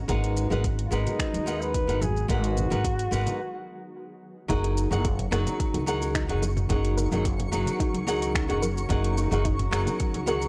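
A shimmering, ethereal pad and a woody, thumpy upright bass open this smooth sunset chillout excerpt in F# major at 109 BPM, with the pad sitting dark and very quiet beneath the pizzicato bass up front. Almost at once a fingerpicked flamenco guitar with analog delay joins, alongside a deep house kit of finger snaps, metallic hats, shaker and toms, a deep, tape-toned electronic kick with studio reverb, and bright, band-limited bongos and congas kept very quiet. A mellow flugelhorn carries the melody with vibrato from 0.9 to 3.9 seconds, distant and roomy in a classical style, as a break from 3.4 seconds leads into the second section. There the harmony shifts from G#m7 to F#6 as a soft, round, warbling pluck plays arpeggios in the background with chorus and delay, and from 5.2 seconds a twinkling, sparkling granular texture adds high glitter. The whole has a dry, gritty hardware sound with light, small-room reverb.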